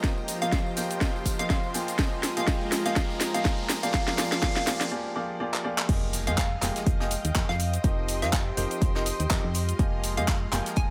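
A swung sixteenth-note groove in 4/4 drives this bittersweet, soulful piano house clip, cut from a longer piece, with a punchy, up-front electronic kick layered with an overdriven garage kit of cracking snare, hi-hat, handclaps, cabasa and crash cymbal, all set in small-room ambience. A clear, worn grand piano carries the riff with dub echo and sidechain pumping, while a hollow, bouncy square-wave pluck, detuned and chorused with a filter sweep and its own dub echo, plays the melody in a high register. In the background, shimmering vintage string-machine violins with ensemble chorus and an airy, breathy pad with chorus both swell in slowly and pump with the sidechain, over chords moving between Eb6/F, Fm11 and Bb9/F. The opening build-up brings drum fills, a very quiet, dry acoustic tambourine that drops out at 4.9 seconds, and a faint electronic riser leading into a brief break. At 5.9 seconds the drop lands with an impact, a round, dark FM bass with a fast attack and sidechain pumping, and a very quiet brush kit with a fat snare and hi-hat, all under a light small-room reverb.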